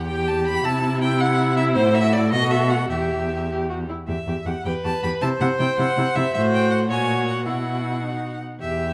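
Restless and urgent, this quick classical-period movement for string quartet moves in a straight 6/8 and is cut from a longer piece. The first violin carries the melody up front with a smooth, even vibrato, while the second violin traces a second line just beneath it in the same polished manner. The cello anchors the bass with a focused, up-front tone, and the viola fills in the accompaniment from 0.1 seconds, its playing expressive and marked by portamento. Both violins and the viola sit at a distance, blooming in the moderate reverb of a scoring stage. The opening phrase is stated and then returns at 4.1 seconds, its harmony darkening through a diminished chord before settling on a suspended chord that resolves to the dominant at 8.0 seconds, leaving the music poised to continue.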